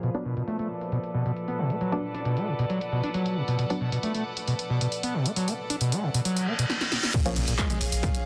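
A squelchy, gritty acid bass sits up front in this short cut from a driving peak-time techno track at 135 BPM, its resonant sawtooth tone saturated and overdriven, with lush chorus, delay and sidechain pumping as a filter sweep runs across its riff. Beneath it, a punchy analog drum machine with a tape-warm character hits crash and ride cymbals, handclaps, hi-hats, toms and a punchy snare set in a short room, while an evolving analog drone built from sawtooth and pulse waves hovers in the background with chorus, phaser and pumping. A rich chamber string section adds earthy, bowed ensemble texture with light vibrato and a smooth top, and a very quiet, muted dub chord stab with a detuned, mellow sawtooth tone flickers through filtered sweeps. The dark, intense mood builds over a Bm chord until a reverse cymbal rises from 6.4 seconds and a drum fill leads into the drop at 7.1 seconds. There the harmony shifts to Bbm, an electronic impact lands, and a heavy, layered overdriven kick arrives with a deep, thick sine sub bass, saturated and low-pass filtered, pumping in the background. 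The whole is bathed in light digital reverb and finished with a dense, heavily limited modern master.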